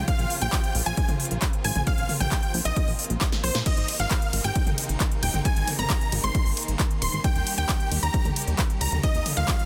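Uplifting trance with a euphoric, soaring mood, heard in a short excerpt cut from a longer piece in straight 4/4. A huge, thick supersaw carries the melody up high, its detuned sawtooth unison given weight by a sub octave, vibrato, sidechain pumping and delay, while a lush, bright unison pluck shares the same register as a very quiet second line. Beneath them a distant, bowed studio string section holds sustained chords with a soft attack and expressive portamento, pumping against the beat. A plucky, funky analog bass sits up front with a fast attack and mellow decay, also ducking with the sidechain. The punchy electronic kick leads the mix, joined by a big-room kit of crisp hats, punchy snare, handclaps, ride, crash and toms, with a drum fill from 3.2 to 3.7 seconds leading into the change from Bbmadd9 to Abadd9 and later Eb7. The sound is dry and dense, with a heavily limited modern master.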